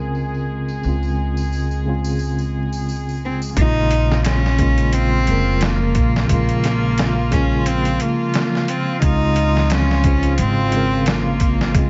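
Trip hop at 88 BPM in Bb minor, dark and brooding, this slice of a longer piece opens on a filter sweep over mellow tremolo tine electric piano, a soft-attack sul tasto string section, woody pizzicato upright bass and a faint tambourine that drops out at 3.5 seconds, before an intimate, airy-bowed cello with light vibrato and tape echo takes the melody from 3.3 seconds and a gritty, pitched-down, overdriven sampler-style drum kit with a thumpy kick enters at 3.6 seconds, all wrapped in vinyl crackle, a muffled low-pass haze and small room ambience.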